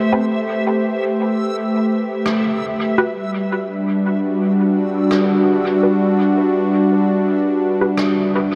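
A smooth, detuned analog pad with chorus holds sustained chords up front in this hazy, spacious, lightly swung ambient dub excerpt at 84 BPM, moving from Am9 to Gmaj7, while a reversed, granular swelling texture drifts high above, muted filter-plucked chord stabs with phaser and dub echo sit in the background, and an acoustic rim click with hall ambience and dub echo enters at 2.3 s, the whole piece set in a huge ambient reverb.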